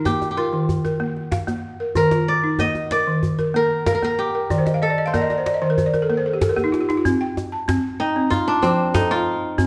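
Kora and balafon open together, the fingerpicked, ringing kora carrying the melody while the woody, buzzing balafon, struck with hard rubber mallets, spins arpeggios alongside it, with a close, dry djembe and its metal rattles joining at 0.1 seconds, in a flowing, reflective West African traditional piece at a straight 94 BPM in 4/4. The balafon takes a fill from 4.5 seconds and the djembe adds a short fill just before 7.0 seconds, where the crisp kora takes a solo that runs to the end of this cut. A moderate recital hall reverb lends the ensemble a sense of space.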